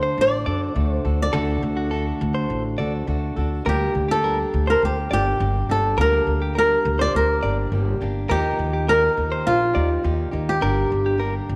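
This tender, reflective acoustic pop passage in G minor opens at 103 BPM with all four parts together: an up-front flamenco guitar carries the fingerpicked melody over a full-bodied jumbo steel-string acoustic guitar, also fingerpicked. A clean, compressed electric guitar recorded direct adds picked arpeggios, while a woody, growly pizzicato upright bass sits up front beneath them. Set in a moderate plate reverb, the harmony moves from D to G minor and through Ebadd9 back to G minor, with the electric guitar dropping out at 11.3 seconds just before this cut from a longer piece ends at 11.6 seconds.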